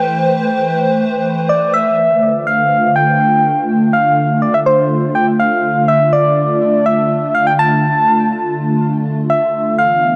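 A round, gentle FM lead with a keys-like, struck quality opens this melancholic, intricate IDM fragment, drawn from a longer piece and set in D dorian at 123 BPM in a straight 4/4, tuned to A4 = 442 Hz. Beneath it, a hollow, flute-like pad holds sustained chords from the first moment, its detuned square, triangle and sine tones blooming through a slow attack and warbling with a vintage ensemble chorus and a moving notch. The lead carries the melody in a high register, each fast-attack note decaying under chorus, digital delay and vibrato, while the mellow pad reaches down into a lower range. The harmony moves from Am9/E to Dm9 at 2.0 s, and both parts sit up front until the music breaks off at 10.2 s. A moderate, lush hall reverb with a 2.5-second tail surrounds the pair, lending the sound a spacious, reflective depth.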